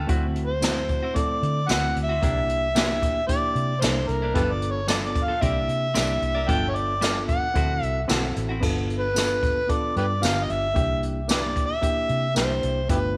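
In a small room with light reverb, this laid-back, gritty straight-eighth soul blues excerpt at 112 BPM in G mixolydian puts an overdriven harmonica up front, playing a jazz-style solo with tongue slaps, scooped notes and light vibrato over a reedy electric piano, a round foam-muted bass, brushed drums with dark cymbals, a boomy kick and tambourine, and clean, compressed electric guitar stabs in the background that stop at 8.6 seconds, all moving through D9, C9 and G9 chords.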